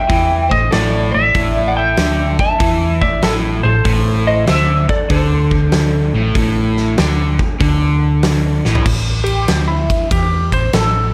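A lightly driven lead guitar with wah and plate reverb carries the melody in this brooding, smoky blues rock and southern rock excerpt, its slightly broken-up, compressed picked tone sitting in A minor at 96 BPM over a swung 4/4 feel. A second lightly driven guitar plays a quieter supporting line in the background, touched with slapback echo and plate reverb, until 8.2 seconds. Underneath, a crunchy, double-tracked overdriven guitar picks a low riff up front, while a hollow-body short-scale electric bass adds a dark, round, amped bottom. A huge arena drum kit, natural and up front in a big room, brings a fat snare and punchy kick along with crash, ride, hi-hat and toms. After a drum fill, the riff guitar drops out at 8.9 seconds and the lead guitar launches a solo over an A5 chord until the clip ends at 11.1 seconds.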